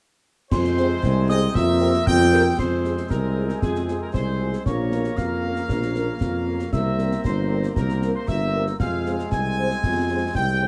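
Dark and slightly roomy, this stern, resolute cut from a military-style wind band march in 2/4 sets a bright trumpet section on the melody over a mellow tuba bass up front, with a pure wooden piccolo above, a soft bell-like glockenspiel only until 2.6 s, a distant woodwind section and a French horn section entering at 0.8 s in the background, clear sustained trombone chords, and concert snare drum, clash cymbals and concert bass drum in a small room.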